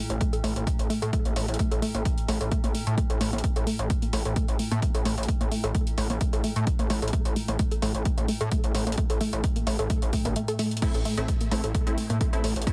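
A gritty, saturated synth bass with sidechain pumping drives this intense, industrial peak-time techno clip at 130 BPM in A phrygian, over a punchy electronic kick and a tape-warm analog drum machine of crash and hi-hat, while a warbling, lo-fi pluck riff with chorus and digital delay rides above a very quiet, eerie metallic drone, and a thick, detuned rave stab arrives at 10.8 seconds, all in a dry, heavily compressed radio-style mix.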